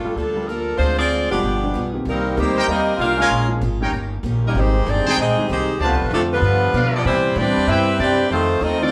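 A sultry, dramatic big band swing fragment opens with a tight, up-front saxophone section carrying the melody over a woody, thumpy pizzicato upright bass, with a boxy picked archtop guitar and a short-sustained baby grand piano tucked behind; a brilliant trombone section adds a second line at 1.3 s, and a clear trumpet section punches in with stabs at 2.6 s, the band playing together in one room with moderate studio reverb.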